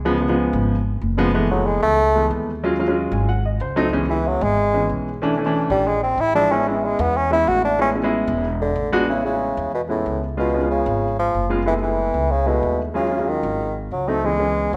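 The recording has the airy acoustic of a church or concert hall, with a moderate stage reverb whose 1.8-second tail gives the players a sense of space. This is a sunny, danceable Afro-Cuban jazz passage at 186 BPM in 4/4 with a straight feel, in A major and tuned slightly low with A4 at 436 Hz, cut from a longer piece. An upright bass with gut strings opens at 0.0 seconds, its pizzicato notes woody, dark and thumpy in the low register. A baby grand piano joins almost at once, intimate and natural, up front, with its action noise audible. The bassoon enters at 1.5 seconds with a warm classical tone and light vibrato, carrying the solo melody up front through the first section, while the piano slips in a brief fill from 3.0 to 3.9 seconds. The harmony moves through rich extended chords such as F#m11, G#7b9 and Amaj9, and a second section beginning at 9.1 seconds returns to the opening run of changes.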